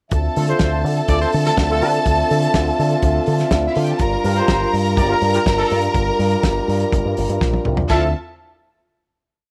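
A picked electric bass with an envelope filter sits up front, playing an octave disco line with slides in this short, glamorous, danceable disco piece at 123 BPM in D minor. A tight-booth soul drum kit drives a four-on-the-floor beat with open hats on the off-beats, a fat snare, a tight kick and dark, rolled-off cymbals. A clear, focused string section plays lush bowed runs into held notes with vibrato, while a mellow French horn section holds smooth, classical-style sustained chords beneath. From 0.4 seconds a warm pop-style horn section with tube saturation adds short riff stabs over the Dm9 to Gm7 progression. A drum fill at 7.4 seconds leads into a final Dm9 chord at 7.9 seconds, all set in light reverb and small room ambience.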